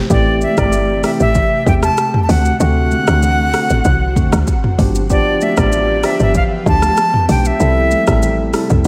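A dreamy mix soaked in plate reverb gives this short afrobeats excerpt, cut from a longer piece, a sultry, hypnotic haze at 96 BPM in A minor. Up front, a deep house drum kit sets a straight 4/4 groove: a layered, tape-warm electronic kit with a deep kick, metallic hats, rim clicks, shaker and toms. Beneath it a woody, punchy log drum bass with a fast attack and decaying tail carries the low end, while very quiet congas add a thin-skinned, high-tuned, vintage colour from 0.4 seconds. A clean tine electric piano, heard through its built-in speakers, comps through Am7, D7, G7 and C6. A very quiet ethereal pad enters at 0.9 seconds with slow-attack, detuned chords in ensemble chorus. The bright silver concert flute leads up front with a crisp attack, airy vibrato and delay trailing its line.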